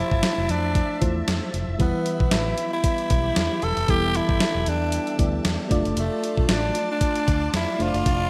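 A raspy, gritty tenor saxophone opens this uplifting, glossy 1980s-style pop fragment at the very start, carrying the close-miked solo melody up front over a mellow FM electric piano with a fast, decaying attack and a noise layer, while a swirling, sawtooth string machine holds sustained chords in the background through ensemble chorus and phaser. A moment later a dark, foam-muted fingered electric bass enters with a round, punchy tone, alongside a clean 12-bit drum machine of hi-hat, thumpy kick and medium-tuned snare, its sampler-style sound tape-tinged, re-recorded in a large room and placed up front with gated reverb. The groove sits at 115 BPM in 4/4 with a light 16th-note swing. The harmony moves from Fmaj7 to Em at 1.8 seconds and settles on Dm/F at 5.7 seconds. A lush hall reverb and bright digital production give the whole passage, cut from a longer piece, its polished sheen.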